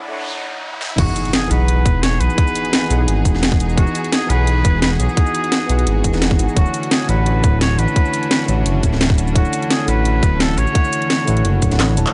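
Dreamy, lush liquid drum and bass cut from a longer piece, where a bell-like tine electric piano and an electronic riser and noise sweep open the first second, with the up-front kit entering on a fill at 0.7 seconds. The drop at 1.0 seconds lands with an impact and brings in a tight, overdriven electronic kick, the kit's cracking snare and bright hats, a smooth sawtooth synth bass, rich bowed strings pumping in the background, and a nasal, breathy muted trumpet with scooped notes, 12-bit grit and digital delay carrying the melody over chords that move from Emaj9 to Dmaj9 at 6.6 seconds, until the kick drops out at 11.8 seconds under a closing drum fill.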